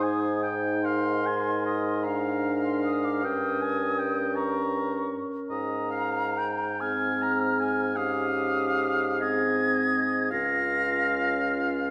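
A hollow, pure-toned concert flute carries the melody high in its register, its vibrato and tongued notes heard close and clear until it falls silent at 11.4 seconds. This is a slow, tender romantic movement for wind quintet in Ab major, flowing in 6/8 at roughly 43-56 dotted-quarter beats per minute with a freely breathing rubato. Beneath the flute, a warm oboe sings a second line with light vibrato, sounding distant and roomy yet still up front. A dark, smooth-topped French horn and a mellow clarinet, the latter set further in the background, fill in the accompaniment, while a soft-attacked bassoon anchors the bass from the front of the blend. The harmony moves gently between Ab and its dominant sevenths before closing on Bbm/Db, all bathed in a generous scoring-stage reverb in this fragment of a longer piece.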